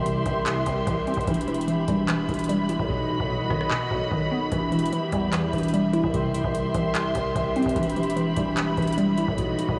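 A glassy, detuned wavetable pluck with chorus, muted con sordino strings held up front, a mellow harp arpeggiating through tape echo and a growling, saturated 808-style bass open this eerie, melancholic half-time trap excerpt in E harmonic minor at 148 BPM, joined at 0.1 seconds by a booming analog drum machine with a deep kick, metallic hats and 12-bit sampler grit, whose hi-hats drop out from 2.9 to 4.5 seconds as chords move through C, Em and B in a dreamy mix soaked in huge ambient reverb.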